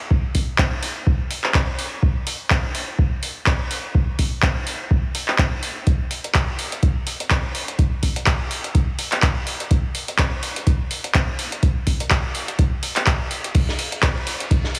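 A swung sixteenth-note groove in four drives this raw, trippy house track, which is cut from a longer piece. A deep, tape-warm electronic kick sits up front from the opening moment, joined at 0.3 s by a booming analog drum machine whose crash cymbal, handclaps and metallic hi-hats are overdriven and re-recorded in a small room. Near the close, at 13.5 s, a dry, lo-fi soul drum kit slips in low in the mix, its ride cymbal dark and filtered and its medium-tuned snare muffled with a rolled-off top. The whole track carries a heavily compressed, radio-like sound with light small-room reverb, giving the drums a squashed, gritty density.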